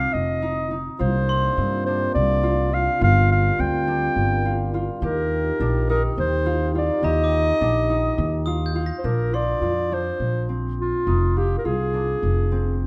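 Set in a straight 7/8 at 209 eighth-note beats per minute and tuned to A4 = 444 Hz, this hypnotic, restless piece of contemporary chamber music is carried by a mellow, up-front solo clarinet melody over a woody pizzicato upright bass and ringing, fingerpicked concert harp arpeggios. A warm French horn section with a soft attack and light vibrato holds tight sustained chords from 1.0 to 9.0 s, while a bell-like, metallic glockenspiel played with hard plastic mallets sounds in two brief spots in the background, set in a boxy small room. The harmony moves through C9sus4, Gm7 and Ebmaj7 before shifting at 9.1 s to Bbadd9 and Fm7, all captured with close, detailed microphones in a moderate recital hall reverb.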